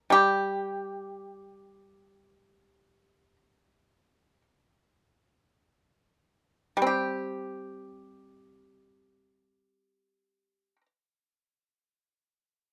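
Chinese traditional solo plucked-string music with a longing, contemplative mood, carried entirely by a pipa played with fingerpicks in the range G3 to G4 from 0.0 to 10.9 seconds. The pipa sounds dry, percussive and up front, and the music slows down between 0.6 and 6.9 seconds before moving into a new section. Close, detailed microphones and a light reverb frame this excerpt from a longer piece.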